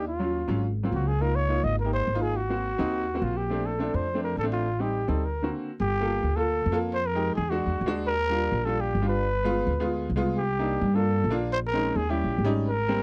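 This excerpt from a longer Afro-Cuban jazz piece opens with a trio playing together from the start: a growling trumpet carrying the melody, a bright upright piano comping chords, and a plucked upright bass holding down the low end. The feel is sunny and danceable, moving at a brisk 210 BPM in a straight 4/4, with rich jazz harmony such as Ebm7, Db69, Am7b5 and Gm9 colouring the changes. The trumpet is raspy and breathy with a light vibrato, close-miked and up front, while the piano has a brilliant, slightly detuned sparkle with short sustain. The bass sounds thumpy and woody, with a dark steel-string tone. A brief break at 5.2 seconds leads from the opening section into a second section at 5.8 seconds, and the dry, close 1970s-style studio sound keeps every part immediate.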